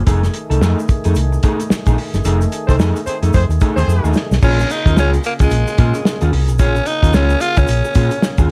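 A dark, dry production frames this cool, hypnotic funk groove at 110 BPM with swung sixteenths, where a muffled, lo-fi soul drum kit with a tight kick and a round hollow-body bass sit up front, a slightly broken-up guitar through a small old amp adds spring reverb, a clicky tonewheel organ holds sustained chords through a slow rotary speaker in the background, and a grainy tube shaker ticks along behind. A tight, clear horn section in octaves comes in from 2.7 to 4.1 seconds during a band accent and drum fill, before a breathy, raspy tenor saxophone takes the melody at 4.4 seconds as the harmony moves from F7#9 to Bbm7.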